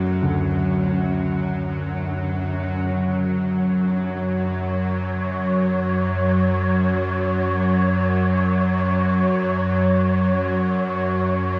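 Dark ambient drone in free time, desolate and ominous, cut from a longer piece and centred on D, steeped in a huge, wet reverb. A tense, string-like bowed drone sits up front with a detuned, ring-modulated edge and vibrato, while a dark, boxy baby grand piano plays low arpeggios through a diffuse delay, its action noise audible, and a breathy, wind-like tuned noise texture hovers high above. A cloudy granular pad, barely audible, blurs beneath them until 2.9 seconds.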